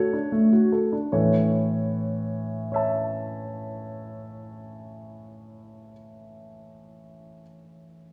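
Cheerful and elegant, this brief excerpt from a classical-period piano sonatina in A major moves at 75 BPM in 3/4, easing into a slowdown over its opening 1.1 seconds as a D/A chord resolves to A. A clear concert grand piano plays solo across the full 8.1 seconds, spanning A2 to A5 with a deep, natural bass and a close, up-front presence. It sits within a wet recital hall reverb with a 1.6-second decay, lending the sound of a church or concert hall.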